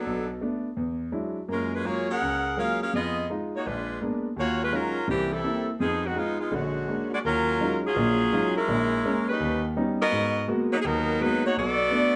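Swinging eighth notes in 4/4 drive this sultry jazz passage, cut from a longer piece, where a warm saxophone section carries the melody up front with vibrato and a soft attack while a clear, vintage-toned grand piano with short sustain accompanies alongside, both set in a moderate large-studio reverb as the music moves over shifting jazz chords from its opening section into a second one at 7.2 seconds.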